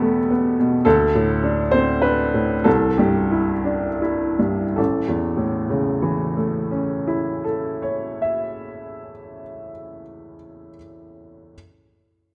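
This is a neoclassical minimalist piano piece, cut from a longer work, with an intimate, wistful mood. A single upright piano plays alone throughout the 11.6 seconds, ranging from A1 up to E5, in 3/4 with a rubato feel and a tempo that drifts between 76 and 108 BPM. Its tone is woody and a little boxy, and it sits up front and clear in a concert hall whose moderate reverb lingers after each phrase. The opening passage slows down until 4.8 seconds, moving through E minor, a bare D fifth and C major. A second passage then begins on A and continues the same gentle, reflective character.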